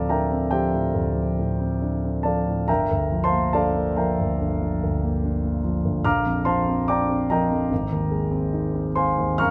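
Mysterious and wistful, this short impressionist classical passage for solo piano drifts in 4/4 at around 68-74 BPM with a free, rubato feel. The warm concert grand sits up front, ranging from a deep bass G1 to F6 with long sustain, moving through Dm7, Gm7 and Bb69 before reaching G#69 at 7.7 seconds. Close, detailed miking captures the instrument while a moderate recital hall reverb adds a gentle sense of space.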